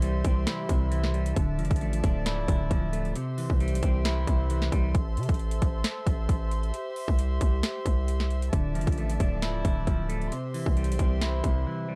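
An overdriven trap kit with a hard-clipped kick, sharp snare, metallic hats and finger snaps sits up front beside a punchy, heavy 808 bass in this melancholic, dark half-time hip hop excerpt, the kit breaking off at 11.5 seconds and the bass at 11.7. A clean, fingered semi-hollow guitar, muffled by a low-pass filter, plays accompaniment that drops out at 4.9 seconds and returns at 8.5. Alongside it, a chamber string section holds soft, floating sul tasto chords throughout a dry, dark mix.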